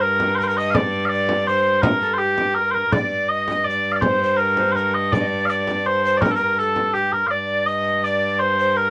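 This short excerpt sits in a compact booth with a moderate, brief reverberation that gives the ensemble an intimate feel. It is a medieval dance in triple metre with a straight feel, and its mood is ancient and mysterious. Mellow small bagpipes carry the melody up front with a sweet, continuous tone and vibrato. A breathy alto recorder plays a second line from a distance, its woody, tongued notes unsteady and marked by chiff and vibrato. Beneath them, a single bowed, fretted viola da gamba sits close and holds a low drone on G2, clear and ringing with a reedy gut-string tone, light vibrato and period style. A frame drum with a warm, acoustic small-room sound enters at 0.2 s and stops at 7.2 s, leaving the pipes, recorder and gamba to finish the passage.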